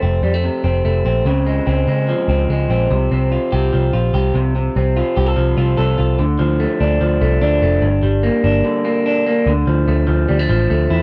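Jangly indie pop at 146 BPM in F major, this youthful, bright fragment of a longer piece pairs an electric guitar through a small old amp, playing twangy, slightly broken-up arpeggios, with a round, foam-muted picked electric bass, both sitting up front for the full 11 seconds. The chords move from F through Dbmaj7, Csus4, Dm and Gm before settling on Dmadd9 at 9.5 seconds. The dry, close sound recalls a 1970s studio, with the guitar's lo-fi sparkle set against the dark, amped bass.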